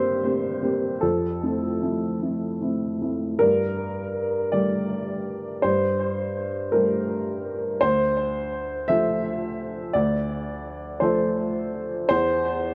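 Intimate and reflective, this short piece of neoclassical minimalist piano drifts in 6/8 at a slow 50-57 BPM, felt in dotted quarters, with a loose rubato feel and a tonal center of G dorian. A single upright piano carries the whole piece, close and up front, its woody, slightly detuned tone ranging from D2 to E5 and trailed by a tape echo. The recording has a worn, old-cassette character with warbly pitch drift and light reverb, which lends the piano a fragile, faded glow. The harmony opens on C7/G and Fmaj7, settles onto Gmadd9 at 3.4 seconds, and moves through Dm7 to a rootless Am/E near the close. Cut from a longer work, the piano plays from the start until 12.7 seconds.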